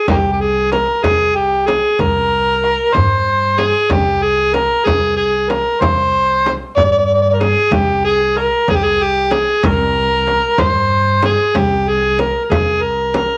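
Persian modal ensemble music in dastgah shur on C, this hypnotic, soulful piece moves at a slow 63 beats per minute in a straight 6/8, tuned slightly sharp to A4 = 444 Hz. An amplified, overdriven harmonica carries the melody up front as a jazz-style solo, its gritty tone marked by light vibrato, tongue slaps and scooped notes that reach into microtonal inflections near the top of its range. Beneath it, a pizzicato upright bass with steel strings gives a woody, growly foundation in a low register. A deep, large frame drum struck with hard hands sits close and dry, while a tight tombak played with soft hands stays in the background. The studio reverb is wet but fairly short, and the whole recording is a brief cut from a longer piece, with every part present from the opening moments to about 13 seconds.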